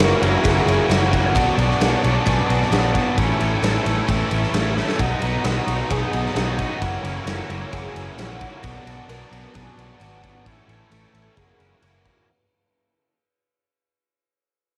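Hazy and wistful, this fading shoegaze and dream pop fragment layers a biting, bright overdriven guitar riff and a warmer overdriven guitar riff veiled in reverse reverb over a round, foam-muted fingered bass and an up-front, punchy rock drum kit with a drum fill at 4.8 seconds, while a shimmering, woody twelve-string acoustic guitar picks arpeggios through tape echo and a brassy sawtooth analog pad holds sustained chords in the background, all colored by the grain of a home cassette recording.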